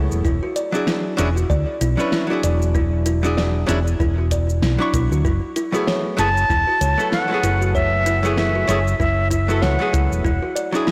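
A silver concert flute floats up front from 6.2 seconds, airy and soft in attack with gentle vibrato, its line touched by digital delay over a smooth, warm sunset chillout groove in F# minor at 96 BPM with a 16th-note swing. Beneath it, a dark, clean archtop guitar, picked and compressed with a hollow-body tone, carries the accompaniment through tape echo, while a woody kalimba with a thumbnail pluck and vintage, band-limited character spins short arpeggios through the same echo. A round, dark hollow-body short-scale electric bass sits up front, fingered and amped, as the harmony moves from E13 to F#m11 and on to E9. The smooth R&B drum kit offers a fat snare, warm hi-hats and cabasa, re-recorded in a small room, and a deep, overdriven analog-style electronic kick anchors the pulse. Light reverb and digital ambience surround a blown-out, overdriven mix in this short cut from a longer piece.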